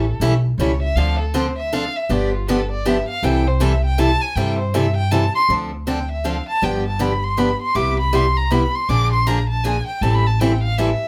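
From the opening second a smooth, expressive bowed violin solos with vibrato and portamento over a bright, boxy picked steel-string acoustic guitar with audible finger squeak and a woody, thumpy pizzicato upright bass on gut strings, all three up front in a playful, swinging acoustic string swing tune at 159 BPM in 3/4 and C major, moving through chords such as A7, Dm7, G7 and Cmaj7 across two passes of the same section in a short cut from a longer piece, set in moderate studio reverb.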